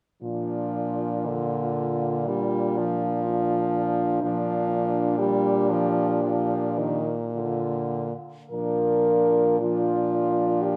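From 0.2 s, four French horns sound together on a Bb chord, opening a serene, tender classical piece in Bb major, heard here as a passage cut from a longer work. The tempo drifts between 48 and 64 BPM in a rubato 4/4. The top horn carries the melody between D4 and Bb4 with a warm, smooth tone, while a second horn sings a gentle inner line from D4 to F4, its soft attack placing it at a roomy distance. A third horn plays the accompaniment in the D3 to G3 range, clear and up front, and the lowest horn holds the bass on Bb2 with a touch of vibrato, also close to the listener. A moderate concert hall reverb with a 1.9 s decay surrounds the quartet, and a new section begins at 8.5 s before the piece breaks off at 10.8 s.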